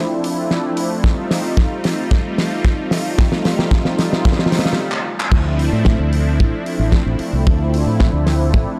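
A smooth, detuned sawtooth pad with chorus and tape echo opens this sleek, groovy nu-disco excerpt, sustaining soft-attack Dm7 and F7 chords as a damped 70s kit with a fat snare, hi-hat, handclaps and crash drives a drum-fill build-up, joined by a tight kick at 1.0 seconds. After a brief stop, the drop at 5.3 seconds brings in a bright, punchy fingered electric bass through an envelope filter, sitting up front with the kick. The whole recording has a dry, gritty hardware character with transformer saturation and a touch of studio reverb.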